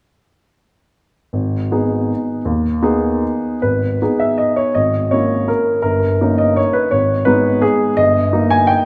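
A moderate scoring-stage reverb with a two-second decay surrounds a warm, open baby grand piano that sits up front, its long sustain ringing through this short fragment of a longer classical work. The solo piano plays a romantic triple-time dance in 3/4 and G# minor, moving freely with rubato between 141 and 181 BPM and spanning G1 to G#5, its dotted rhythms carrying a nostalgic, wistful mood. Entering at 1.3 s and shifting into a new section at 3.6 s, the harmony turns from G#m through a half-diminished chord over a G# bass to a D#7, closing on D# over G at 8.0 s before the piano stops at 8.9 s.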